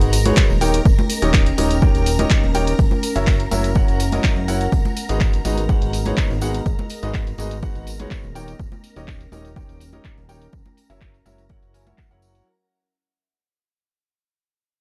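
A dark, dry mix fades out across the whole of this energetic, soulful piano house clip, which is cut from a longer piece. A clear, woody upright piano riff with digital delay and sidechain pumping leads over a fat, detuned analog bass and an up-front punchy electronic kick that arrives at 0.4 s. Around them sit a tape-flavoured drum machine with handclaps and a low-pass-filtered hi-hat, ringing close-miked tambourine and congas, shimmering vintage string-machine violin chords with ensemble chorus, and a warbling, nostalgic lo-fi pad with chorus and reverb entering at 0.2 s, all cycling through G#m7, D#7 and F#7.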